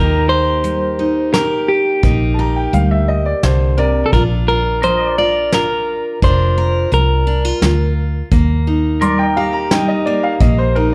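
Honky-tonk and classic country in an easygoing three-beat sway, this nostalgic excerpt from a longer piece sits in a dark, warm production with light reverb. A clean, twangy electric guitar carries the melody up front until 7.9 seconds. Beneath it, a picked steel-string acoustic guitar with an auditorium sound plays along with a round, foam-muted electric bass. Soft brushes on a small-room kit bring in punchy kick, snare and hi-hat from 0.6 seconds. A pedal steel guitar, played with fingerpicks and slide, sits low in the mix holding sustained chords with volume swells. A brilliant, woody upright piano adds a brief second line early on, then takes the solo in the closing section, playing from 9.0 seconds to the end.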